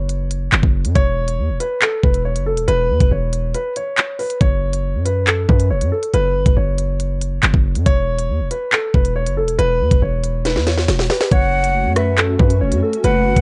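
A dark, intimate concert grand piano with audible action noise carries the melody through tape echo from the very start, over a distorted, heavy 808-style bass with a noise layer and an up-front drill kit of knocking kick, sharp snare, crisp hats, rim clicks and handclaps in a tense half-time feel. A break arrives at 3.5 seconds, and later a drum fill leads into a new section at 11.3 seconds, where a breathy jazz flute with vibrato adds a second line through tape echo while a hollow, warbling pad with ensemble chorus sustains chords beneath it. This hip hop piece, cut from a longer track, sits in light reverb with a rounded top end.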